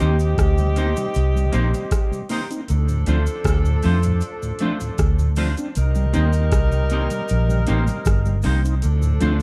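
A round, foam-muted electric bass sits up front in this serious, laid-back roots reggae excerpt at 78 BPM in C dorian, moving between Cm7 and Dm7 under a booming analog drum machine whose deep kick, metallic hi-hat and rim click carry an overdriven grit. A dark, clean semi-hollow electric guitar with lush chorus and a smooth tonewheel organ with chorus vibrato and slow rotary speaker fill out the accompaniment, the organ sitting in the background, while a mellow, distant horn section with light vibrato plays a second line. All three of these parts trail dub echo, and a close cabasa adds faint texture under light reverb.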